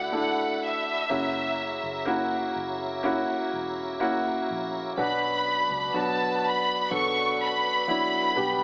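From the opening moment, an emotional pop ballad unfolds as a clear, smooth violin section carries the heartfelt melody up front with vibrato and tape echo, over intimate grand piano with audible action noise, piping tonewheel organ chords with key click and chorus vibrato, and a dark, foam-muted electric bass in the background, the harmony passing from Dadd9 through F#7 to Bm under concert hall reverb and an AM radio sound.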